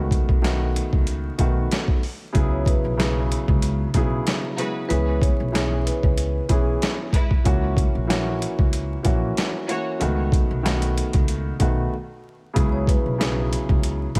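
A swung boom-bap groove at 94 BPM in 4/4 drives this reflective, tough hip-hop excerpt, its gritty, compressed sampler-style kit sitting up front with a thumpy kick, medium-tuned snare and hi-hat that sound re-recorded in a large room. Underneath, a woody pizzicato upright bass holds the low end, while a dark, mellow grand piano carries the accompaniment through a tape-worn, filtered tone. From 2.5 seconds a metallic, ringing vibraphone played with medium mallets and the motor off floats a quiet melody in the background, colored by filtering and delay. Clear, pure bowed strings with a soft attack add floating studio-ensemble stabs between 4.6 and 10.0 seconds, also touched with delay. The chords move from B7 through Eadd9, C#m7 and F#7, a short break arrives at 11.9 seconds, and the whole mix sits in a small room with a layer of vinyl crackle.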